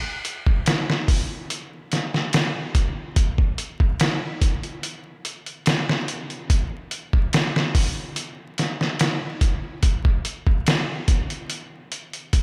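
A moderate church-like reverb and a bed of vinyl crackle surround this dark, brooding trip hop fragment, cut from a longer piece in a straight 4/4. The sampler-style drum kit sits up front from 0.2 seconds, its pitched-down, compressed sound gritty, with a thumpy kick, a medium-tuned snare and hi-hat, all carrying the ambience of a large room in which the kit was re-recorded.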